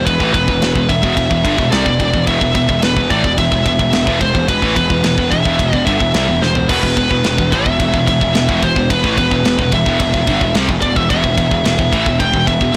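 A straight 4/4 heavy metal groove at 109 BPM in E minor drives this dark, epic excerpt, where an up-front, high-gain lead guitar carries the melody from B4 to G5 over three low riffing guitars (a very quiet scooped high-gain part, a double-tracked thick fuzz part in the background, and a tight distorted one), a growly, overdriven fuzz bass, and a tight acoustic drum kit with bright cymbals and a soft-clipped kick that enters at 0.1 seconds and plays a fill at 6.4 seconds, all on a single Em chord in a blown-out, overdriven recording with little reverb.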